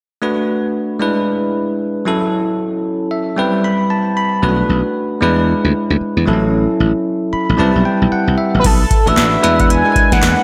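Slick and punchy, this short cut of R&B in a new jack swing style moves at 114 BPM in 4/4 with a 16th-note swing, sitting in B dorian over a cycle of Bm7, E7, A6 and Cmaj7. A bell-like tine electric piano opens alone at 0.2 seconds, clean and up front with tube saturation and slapback echo, and it adds fills from 2.9 to 4.4 seconds and from 7.1 to 8.6 seconds. A bright, growly slap bass joins at 4.4 seconds, sounding direct and amped. At 8.6 seconds the second section arrives with a booming analog drum machine: a deep kick, crisp snare, metallic hi-hat, handclaps and crash cymbal, overdriven and re-recorded in a small room. Alongside the drums comes a bold, retro octave-doubled lead blending sawtooth and triangle tones, with a filter sweep, vibrato, chorus, phaser and slapback echo on its sustained notes. A lush hall reverb gives the whole mix a big arena sound.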